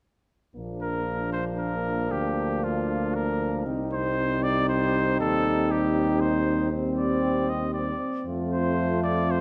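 A stately, noble brass quintet in 3/4 at 117 BPM, set in Bb major and cut from a longer classical piece, with flugelhorn, trombone, French horn and bass trombone entering at 0.6 seconds and the trumpet joining at 0.8 seconds to carry the melody. The clear trumpet and mellow bass trombone sit up front, while a close-miked flugelhorn with light vibrato and a soft attack plays the second line, and a punchy French horn with vibrato and a smooth top and a bright, vintage-toned trombone fill in the accompaniment from the background. A moderate concert hall reverb surrounds the ensemble as the harmony moves from Bb through Cm to F at 8.3 seconds.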